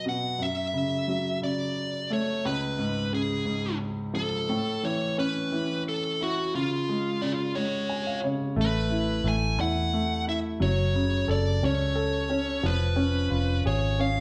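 A six-eight pop ballad with an aching, melancholic mood, cut from a longer piece and played live together in a stone room whose reverb lends a resonant wash. A smooth, dark, overdriven lead guitar carries the melody up front over a clear, natural grand piano with short sustain, and the piano plays a fill at 7.5 seconds. At 8.6 seconds a vintage muted fingered electric bass enters, round, punchy and amped, giving the second section a firmer low end.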